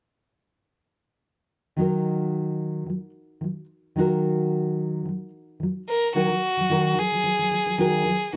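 Pop in Eb minor at 110 BPM with a light 16th-note swing, this wistful, reflective fragment of a longer piece opens at 1.8 seconds on a dark, full-bodied, thumb-plucked nylon-string guitar accompaniment, joined at 5.9 seconds by a rich, intimate violin melody played sul tasto with light vibrato, a soft attack and an airy bow, both parts up front under close, detailed microphones and light reverb.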